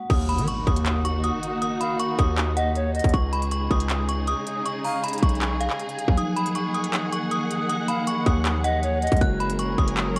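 The rhythm rides a half-time trap groove at 158 BPM in 4/4, driven by an up-front electronic drum kit with a hard-clipped kick, crisp hi-hats, handclaps and crash cymbal, while a distorted 808-style bass hits heavy and saturated with a fast attack and a noise layer, the kick dropping out briefly from 6.2 to 6.9 seconds. The mood is hard-hitting and menacing in Eb minor, moving through Ebm, Dbadd9, Ebmadd9 and Gbadd9 in this short cut from a longer piece. A metallic FM bell carries the melody high above, inharmonic and ringing with a long release, colored by chorus, low-pass filtering, cassette tape grit and tape echo. A lush symphonic string section holds sustained chords with vibrato and portamento, and a worn, slightly out-of-tune tine electric piano returns at 6.1 seconds as mellow accompaniment. An airy, reedy concert flute adds a tongued second line with tape echo in two short passages, while an electronic impact sits in the background at the opening. 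The mix is dry with little reverb, carrying the lo-fi character of a home cassette recording.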